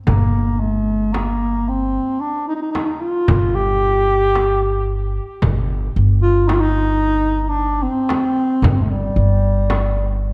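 A warm bass clarinet carries the melody up front, its vibrato and scooped notes lending a jazz-inflected, roomy voice to this hypnotic, melancholic excerpt of Arabic maqam ensemble music in a straight 10/8. Beneath it, a woody, thumpy upright bass on gut strings plucks a dark, pizzicato foundation, while a crisp metal-shell darbuka played with soft hands sits distant in the background and a deep, dry frame drum struck with hard hands sounds close. The dark production sits in a moderate recital hall reverb, with the frame drum falling silent at 9.9 seconds just before the others stop at 10.3.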